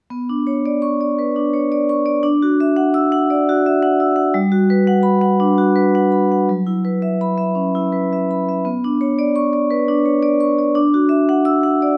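Flowing and reflective, this contemporary classical piece for solo vibraphone moves with a rubato feel in 4/4, drifting freely rather than marching to a strict pulse. The vibraphone, struck with medium hard mallets and played with the motor off, has a metallic, ringing tone that leans dark and smooth, and it sits up front in a close, detailed recording. Its range stretches from F#3 up to E6, carrying the piece alone from 0.1 to 12.0 seconds. The harmony circles through Bmadd9, Dadd9, Gmaj7 and F#7sus4 before returning to Bmadd9 and Dadd9, giving the passage a gently unresolved, searching quality. A light reverb adds a touch of air around the instrument, and the passage is cut from a longer piece.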